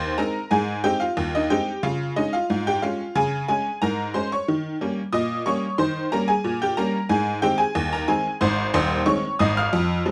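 Ragtime piano in Ab major at 91 BPM in a straight 2/4, this short, playful and lively passage is cut from a longer piece and features a solo tack piano ranging from Eb1 to F6. The instrument sounds metallic and jangly, with a percussive, vintage bite and short sustain, placed up front in a light reverb. The harmony moves from Ab to Db, then to Eb7 at 4.5 seconds before returning home to Ab at 7.1 seconds.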